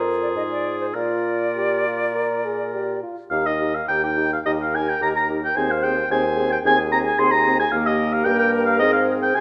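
This cheerful, graceful excerpt from a quick classical-period movement for wind quintet opens at 0.0 seconds with oboe, clarinet, French horn and bassoon sounding together. The bright concert flute takes the melody at 0.2 seconds, airy and expressive, with vibrato and a soft attack, captured close. The oboe carries a second line, sitting up front yet roomy, while the dark clarinet hovers in the background as accompaniment. The French horn lends a warm, vintage colour to the inner harmony, and the mellow bassoon anchors the bass with light vibrato. With a rubato feel, the harmony moves from F minor to B-flat before the second section settles onto E-flat at 3.3 seconds, all bathed in the wet reverb of a recital hall.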